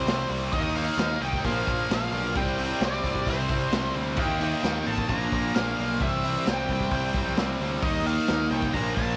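A moderate echo-chamber reverb with a 1.5-second tail wraps this short, confident classic rock passage, which moves at a straight 132 BPM in 4/4 and circles through C, Eb and Bb chords. A raw garage drum kit drives it from a small, pumping room, with a punchy kick, a medium-tuned snare, dark cymbals and a gritty, rolled-off top. Beneath it, a growling picked electric bass adds overdriven bite. Two double-tracked guitars carry the riff together: a tight distorted one and a bright fuzz guitar sitting further back. Over them, an octave-fuzz lead guitar sings the swaggering melody with a dark, wah-coloured tone. At 3.3 seconds a very quiet, compressed fuzz lead enters with a second line, while a jingly, close tambourine and a vintage string-machine cello pad, sawtooth-based with a soft attack and ensemble chorus, fill in the edges.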